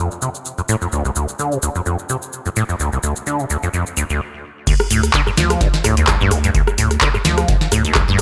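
Gritty and trippy, this acid house excerpt cut from a longer piece moves at 128 BPM in 4/4 with a 55% swing on the sixteenths, centred on D phrygian over a Dm chord. A squelchy, resonant sawtooth acid bass riff with a filter sweep sits up front from the start, treated with ensemble chorus and delay, alongside a booming analog drum machine of crisp snare, metallic hats, handclaps, rim click, shaker and crash cymbal, with a short room on the snare, clap and hats. After a stop from 4.2 to 4.7 seconds, the drop brings in a deep electronic kick and a thick, saturated sine sub bass with sidechain pumping, all under light reverb.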